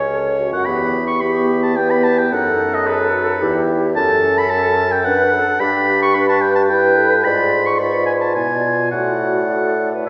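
A smooth-topped oboe sings the up-front second line over a pure flute melody with vibrato in the background, while a distant, roomy clarinet and a warm French horn with light vibrato fill in the accompaniment and a clear bassoon anchors the bass, in this cheerful, lively classical-period wind quintet movement in D major at a quick 109 BPM in 3/4, cut from a longer piece and heard from further back in a wet scoring stage.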